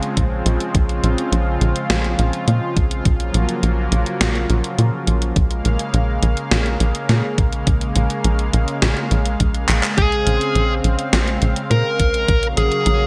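A tight, punchy sawtooth sequencer bass drives this nocturnal synthwave clip alongside a thumpy electronic kick, both entering just after a tape-warm 80s drum machine of handclaps, hi-hat and gated-reverb snare and a lush, warbling detuned pad with chorus and sidechain pumping. A drum fill at 9.7 seconds then ushers in a dark, overdriven lead guitar with delay at 10.0 seconds.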